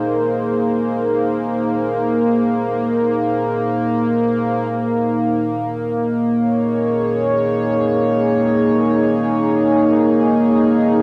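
Spacious and melancholic, this ambient excerpt in Bb minor drifts in free time, carried entirely by a solo analog pad that sits up front, blending sawtooth and triangle tones with a sub octave, a slow attack and long, sustained release, between Bb3 and Db5. Chorus and tape echo color the smooth, dark pad as it moves from an Abadd9 chord to Bb minor at 4.7 seconds. A deep cathedral reverb with a 6.9-second tail wraps the whole piece in a warm, shadowy production.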